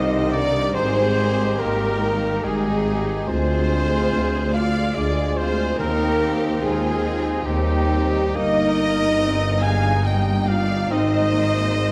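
A distant, intense violin section carries the serene, lyrical melody of this slow romantic orchestral movement in 3/4 at 71 BPM with a rubato feel, moving from C minor to Eb major at 8.4 s, while a richer second violin section, pure-toned flutes, a soft-attack clarinet and a bright trumpet playing stabs share the upper lines above very quiet violas, a background bassoon, mellow French horns holding chords, focused cellos, lush double basses and a roomy tuba on the bass, with round calf-head timpani touching in at 5.8 s, all in a concert hall reverb under vinyl crackle.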